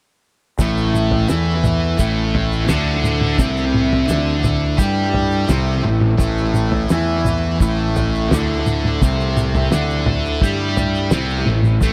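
A straight 4/4 pulse at 85 BPM drives this kaleidoscopic, trippy psychedelic rock excerpt: a bright, double-tracked fuzz guitar riff sits up front on an A5 chord from 0.6 seconds, soaked in distortion, phaser and dub echo, over an overdriven fingered electric bass, while a cloth-damped, thuddy drum kit with a fat snare, tight kick and its own dub echo, a reedy, breathing pedal harmonium holding sustained chords, and a grainy egg shaker hang back in an echo-heavy mix with light reverb and small room ambience.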